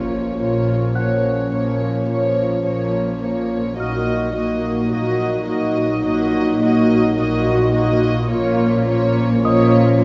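Cinematic suspense film score in Bb minor at a slow 53 BPM, uneasy and tense, with a huge, dark impact sounding very quietly beneath the opening as the chords move from Bbm to Ebm/Bb at 3.8 seconds and back. Bowed sul tasto strings carry it: violins float a pure, soft-attacked melody, violas add woody, lush accompaniment with vibrato, and cellos and double basses hold an intimate, close bass while mellow French horns sustain chords. From 1.0 seconds a small celesta adds a delicate, bell-like, dry texture, all set in a moderate concert hall reverb.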